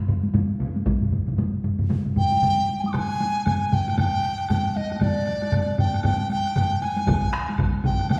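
Layered taiko ensembles struck with hard sticks open this driving, powerful excerpt of Japanese traditional drumming at 116 BPM in a swung 4/4, with a heavy-stick solo taiko in the background, a close, dry heavy-stick group punching in briefly around 0.9 s and again from 7.1 s, an up-front, airy bamboo dizi with buzzing membrane, vibrato and tape echo taking a mellow, hollow melody in G miyako bushi from 2.2 s, and a distant woody woodblock joining at 2.9 s, all heard from further back in a reverberant recital hall.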